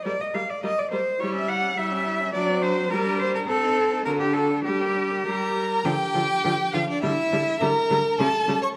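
A quick, restless and dramatic classical-period string quartet movement in G minor at 104 BPM in 2/4, played with rubato and tuned to A4 = 435 Hz, where a distant, expressive first violin carries the melody with vibrato and portamento over a focused second violin line, an intense, up-front viola accompaniment with light vibrato, and a smooth, even cello bass, all bowed by single players in a wet recital hall that gives the short cut from a longer piece a shift from its opening section to a new one at 5.9 seconds.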